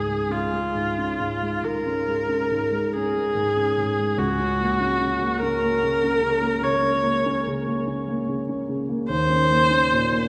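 A single bowed viola leads this brief passage lifted from a longer romantic classical work, its clear, intense tone carrying a lyrical melody with vibrato between F4 and Db5. A grand piano with a warm, up-front sound supports it throughout the 10.3 seconds, accompanying in the low and middle register from Db2 to Db4. The pulse is slow, 48 BPM counted in dotted quarters in 12/8, and the rubato lets the line breathe freely. The harmony rests on Db, moves to Gb over Db at 4.2 seconds, and arrives on an Eb5 chord at 9.1 seconds. A long cathedral reverb fills the church or concert hall around the duo, giving the performance a warm, spacious glow.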